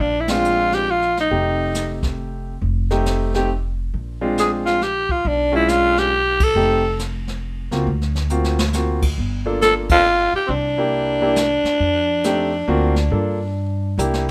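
Playful and sophisticated, this short excerpt of small-group jazz swings lightly in three, moving between swing and bop. A raspy, growling alto saxophone carries the melody in phrases at 0.0, 4.4 and 9.6 seconds, its edgy tone softened by a gentle attack and light vibrato. Beneath it, a woody pizzicato upright bass sits up front with a growly steel-string character, while a clear concert grand piano fills in the harmony from just after the start. The brush kit adds dark cymbals, a medium-tuned snare and a boomy kick, with short fills around 8.3 seconds and at the very end. Band accents punctuate the phrase, and the harmony moves through rich ninth chords, a diminished passing chord and altered dominants, all set in a natural studio room with light reverb.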